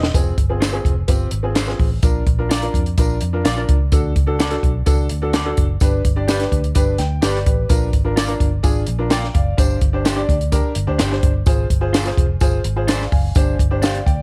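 Passionate and driving, this uptempo 1960s-style soul excerpt moves at 127 BPM in a straight 4/4, cut from a longer piece and built on a chord cycle that opens on Fm and passes through Bb, D and G before settling on Gsus4. A compact cocktail drum kit sits up front with a dry, high-tuned snare, punchy kick and hi-hat, while a vintage muted fingered electric bass supplies a dark, round, foam-muted low end. A clear upright piano carries the accompaniment with a woody, slightly detuned and boxy character and long sustain, adding a short fill at 13.8 seconds. An electric guitar through a small old amp enters at 0.6 seconds with picked stabs that sound slightly broken-up. A jingly, saturated tambourine sits in the background, and studio reverb gives the whole band a shared space.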